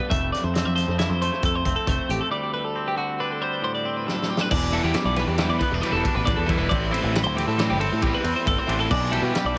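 A bright, twangy clean electric guitar sits up front in this intricate math rock and midwest emo excerpt in 5/4, joined by compressed twelve-string electric guitar arpeggios, a round, dark picked electric bass and a gritty, saturated indie drum kit with a fat snare and punchy kick in a dry, echo-heavy mix, with a break from 2.3 seconds capped by a drum fill before a double-tracked, overdriven electric guitar riff enters in the background at 4.5 seconds, tape echo trailing every part except the bass.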